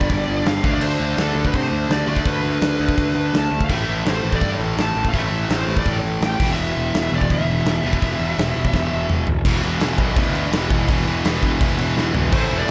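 Punk rock, raw and angry, drives along at 167 BPM in a straight 4/4 in this short cut from a longer piece. A double-tracked, overdriven electric guitar sits up front, playing a picked riff over power chords moving from G5 to D5, A5 and E5. A high-gain lead guitar with a bright, distorted edge carries the melody on top until 9.1 seconds, then returns briefly at 12.3 seconds. Underneath, a growly fuzz bass, picked and played direct and amped, holds down the low end. A big acoustic rock kit in a large room adds a dark, smooth sound, with a punchy kick, medium-tuned snare, hi-hat, crash and toms, and it throws in drum fills at 8.7 and 12.0 seconds. The mix is dry.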